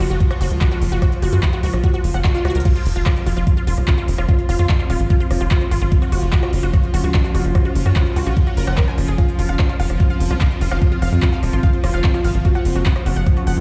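Dry, yet heard through a big sound system in a bare stone room, this cut from a longer psychedelic trance piece runs at 147 BPM in a straight 4/4 with an alien, hypnotic mood. A knocking, up-front electronic kick and a tight, punchy sequencer bass of sawtooth and square wave drive beneath a big-room kit of crisp hats, handclaps, rim clicks and crash cymbal. A warbling, detuned unison pluck with cassette-tape colour and digital delay plays the riff over an evolving, morphing wavetable pad run through a phaser, and both pulse with sidechain pumping. A very quiet electronic swell and a drum fill at 2.4 s lead into the drop at 2.7 s, and from 3.2 s a blurred, cloudy granular pad drifts in the background.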